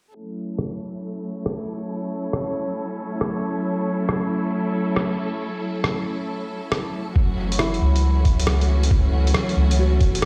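A lush, clear string section carries this nocturnal, wistful future garage excerpt, holding sustained chords from the opening moments with gentle vibrato and a sidechain pump. A muffled, pitched-down sampler-style kit of hi-hat and rim click enters at 0.6 seconds with a swung sixteenth-note feel. Meanwhile a glassy texture of drifting overtones hovers in the background, softened by chorus and its own reverb, as a filter sweep runs through the opening section. At 7.2 seconds the glass texture stops, and a deep, round dub sub bass with tube saturation arrives up front alongside a thumpy, tape-warm kick drum. Shortly after, a felt-muted upright piano adds soft, intimate accompaniment, roughened by 12-bit sampler grit and tape echo and also pumping with the sidechain. The mix sits in a large, bare-sounding room with studio reverb and a low-pass filter that dulls its top end.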